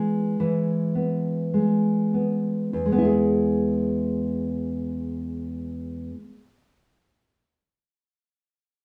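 Rough demo-style sound with a wet studio reverb frames this sunny, warm fragment of a romantic solo classical guitar piece in a free, rubato feel, where an up-front nylon-string guitar with dark, woody old strings and a full-bodied thumb-plucked tone eases and slows through its opening 2.7 seconds before playing on until 6.4 seconds.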